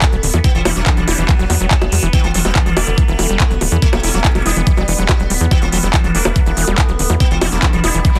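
A buzzing, shimmering sitar carries the melody through this intense, alien psychedelic trance excerpt at 142 BPM in E minor, its phaser and delay pumping against a knocking, up-front electronic kick, a big-room kit of bongos, handclaps and crisp hats, and a tight, punchy sawtooth sequencer bass driving underneath. A squelchy, distorted acid bass riff and a faint, metallic FM wobble line add grit, while an overtone-sweeping drone sustains chords in the background under chorus and phaser. A reverse cymbal slips in at 8.1 seconds, capping a dense, heavily limited modern master.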